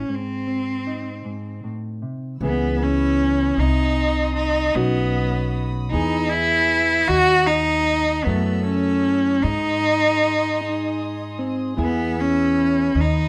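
A slow, straight 6/8 pulse at 51 BPM carries this intimate, melancholic acoustic folk-pop ballad, which opens with a brief break before the fuller passage arrives at 2.4 seconds. Up front, a bowed cello sings the melody with rich, smooth vibrato, over a dark, clean fingered electric guitar colored by phaser and a woody, thumpy pizzicato upright bass. From 2.4 seconds a chamber string section adds soft, floating sustained chords in the distant background, moving through harmonies such as C#m7, D#dim and F#m7 in a moderate room reverb.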